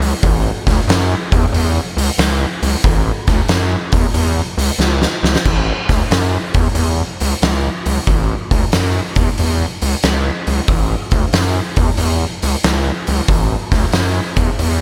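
Driving and raunchy, this blues rock and southern rock power-trio cut swings at 92 BPM in A major, with a gritty, nasal, saturated synth bass and an oversized, low-tuned acoustic drum kit sharing the front of a dry mix, the kit's boomy kick, fat snare and dark cymbals ringing in a bright stone room, and a drum fill from 4.8 seconds leads into the next section at 5.5 seconds.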